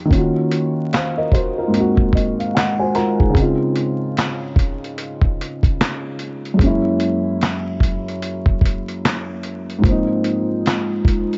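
A dark, woody upright piano opens this nostalgic, mellow lo-fi hip hop fragment, its boxy, intimate tone softened by a low-pass filter, with audible action noise and long sustain, and it plays a fill from 1.7 to 3.3 seconds. A gritty, sampler-style soul drum kit with a thumpy kick, fat snare, hi-hat and handclaps joins at 0.1 seconds, sitting up front with a compressed, small-room character over a swung, unhurried groove. The chords move from Ebm7 through Dbmaj9 and Gb9 to Ab69, all wrapped in light reverb and vinyl crackle with a muffled top end.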